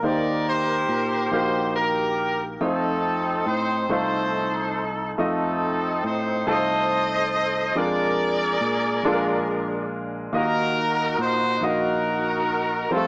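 A clear horn section with vibrato carries the melody in this jubilant, soulful slow gospel passage in 6/8, cut from a longer piece, over polished grand piano accompaniment and a round, punchy fingered electric bass, all heard through echo chamber reverb and a small speaker sound as the harmony moves from Eb6 through F7 and Bb7 to a closing Ebm.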